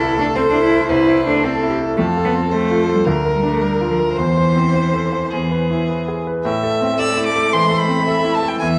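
A quick classical-period movement for piano quartet, spirited and cheerful despite its minor key, moving with uneven, rubato beats through a short fragment of a longer piece. A dark, woody violin carries the melody with vibrato, while a clear, focused second violin sounds more distant and a rich, smooth cello adds a second line beneath. A bright, brilliant grand piano sits up front as accompaniment, all set in a moderate recital hall reverb as the harmony settles on A minor at 6.5 seconds.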